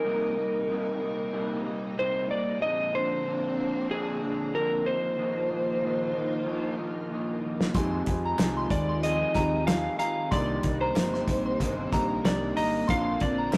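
A gently swung 93 BPM groove in 4/4 arrives at 7.6 seconds on a damped, up-front 70s drum kit with a fat snare and punchy kick, joined by a round hollow-body electric bass, a mellow tine electric piano in the background, a pure, chorused FM synth bell line and very quiet handclaps. Before that, this wistful, hazy indie and bedroom-pop excerpt opens on a compressed slide guitar melody with slapback echo, a dark, slightly broken-up electric guitar with vibrato through a small old amp, and a lush, warbling string machine holding chords that move from Cm7 through Bbadd9 and Ebsus2, reaching Fm7 just as the groove lands. A stone-room reverb and tube saturation give the recording a rough rehearsal-room character.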